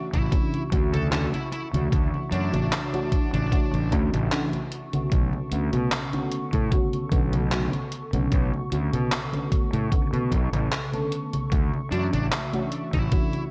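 A mellow FM electric piano and a warbly, detuned pad open this nostalgic, woozy vaporwave fragment, cut from a longer piece. The soft, dark piano carries the accompaniment through phaser, chorus, tape and delay, while the sawtooth-and-triangle pad sits in the background with slow-blooming, sustained chords and its own reverb. Almost at once a thumpy electronic kick and a detuned 8-bit drum machine with congas, handclaps and hi-hat arrive up front, the machine's hits clipped by gated reverb, and a round, punchy fuzz bass anchors the low end with overdrive. A dark, picked fuzz lead guitar states a short distorted melody through tape echo and drops out at 3.9 seconds. The harmony moves from Dmaj9 to Bm9 and settles back on Dmaj9 just before the guitar returns near 11.9 seconds. Cassette grain, faint mains hum and a light digital ambience lend the whole a lo-fi, slightly swung haze.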